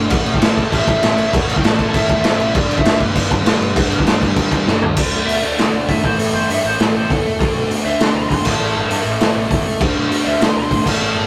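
A rough rehearsal-room recording with tube saturation and light reverb frames this rebellious, rowdy punk rock cut from a longer piece, running at 198 BPM in a straight 4/4. The raw garage drum kit sits up front, its boomy kick, medium-tuned snare, hi-hat, toms and crash sounding gritty and saturated with a rolled-off top. A biting, double-tracked overdriven guitar plays the picked riff over chords moving from A5 to G, while a growly fuzz bass with a bright, amped edge rumbles in the background. A dark lead guitar through a small cranked amp carries the picked melody high above. After a drum fill at 4.7 seconds, the feel drops to half time at 5.0 seconds as the lead launches into a solo over alternating D5 and A5 chords until the end at 11.3 seconds.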